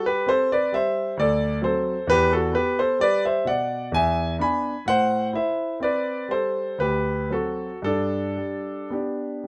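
In 3/4 with rubato, a solo grand piano plays a radiant, dance-like baroque-style suite movement, its polished, up-front tone set in light reverb as the harmony moves from Am7 through D7, Em and E7 before settling on G in this brief passage from a longer piece.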